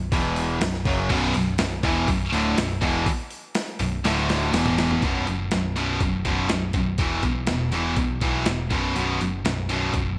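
An energetic, anthemic hard rock excerpt in 4/4 built on power chords, where a distorted electric guitar riffs throughout, a double-tracked overdriven guitar crunches in the background until 5.0 seconds, a scooped, high-gain guitar joins up front at 1.1 seconds, a growly, punchy picked bass holds the low end, and a gritty, compressed sampler-style drum kit with a thumpy kick and gated reverb drives it all, tossing in a fill from 4.0 to 5.0 seconds, under bright 1980s-style digital production with light reverb.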